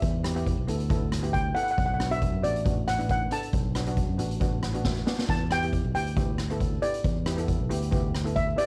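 A lightly swung 4/4 groove at 137 BPM drives this short, dramatic and intense calypso cut from a longer piece, set in E minor and moving from Em7 to Bm7 and back to Em7. Up front, a lead steel pan played with medium rubber sticks carries the melody in a dark, smooth, shimmering voice with a cassette-tape tint. Behind it, a double seconds pan struck with hard rubber sticks adds bright, metallic accompaniment. A fingered electric bass sits low with a direct, amped tone and drops out at 8.5 seconds. The street-band drum kit is prominent, airy and polished, with a boomy kick, medium-tuned snare, rim clicks and hi-hat in a big-room sound that also carries a cassette character. The pan fill arriving at 4.4 seconds, joined by a drum fill at 4.9, leads back to Em7 at 5.3 seconds in this home cassette recording with light reverb.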